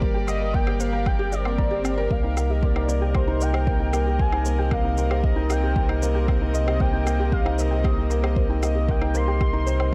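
A straight 4/4 pulse from a deep electronic kick, with layered shaker and woodblock, drives this hypnotic, cinematic piano-and-strings electronica fragment, where a sidechain-pumped round sub bass sits up front beneath a felt-muted upright piano riff, intimate and dark with audible action noise and delay, as a distant, reedy chamber string section holds sustained chords, a very quiet pluck ripples through arpeggios, a velvety detuned synth lead with chorus and vibrato carries the melody from 0.3 seconds, and a background swell sounds between 1.2 and 2.1 seconds over Gm moving to Cm7, all in light reverb.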